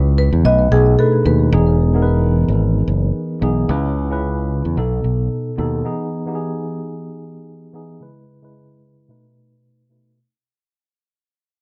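Breezy and joyful, this excerpt of afrobeats moves at 111 BPM in 4/4 with a light 16th-note swing in E major. A mellow, clean tine electric piano heard through built-in speakers carries the chords, cycling through Emaj7, C#m7 and B7, while a punchy, direct fingered electric bass sits up front beneath it. A woody rosewood marimba briefly plays a tape-echoed melody before 1.4 s. From 1.5 s the whole track begins a fade-out and filter sweep, the bass drops out at 5.8 s, and the electric piano carries on alone, all wrapped in a worn, warbling cassette sound with pitch drift, a low-pass filter and moderate studio reverb.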